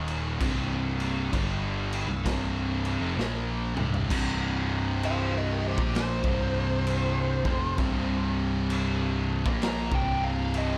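A sludgy, ominous stoner and doom metal excerpt opens on a heavy riff from two thick fuzz guitars, dark and set in the background, alongside a brighter, double-tracked overdriven guitar, with a round, amped picked bass beneath them. A raw garage drum kit sits up front with a boomy kick, a gritty, saturated small-room sound with a pumping room and a rolled-off top, and a swung feel, and a drum fill at 3.2 seconds leads into the next section. At 5.1 seconds a compressed fuzz lead guitar enters high above for a solo colored by wah and analog delay, and the whole recording sits in a light studio reverb.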